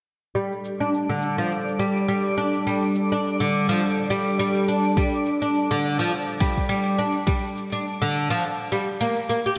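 Mystical and hypnotic, this organic downtempo excerpt at 104 BPM with a 16th-note swing sets a bright, woody, up-front oud playing arpeggios through a low-pass filter sweep and digital delay over the smooth, warbling sustained chords of a detuned analog pad with chorus and sidechain pumping, a tape-warm shaker, a distant twinkling granular shimmer, and a soft electronic kick that arrives at 5.0 seconds and stops at 7.4 seconds, all set in a lush hall reverb with bright 1980s-style digital sheen.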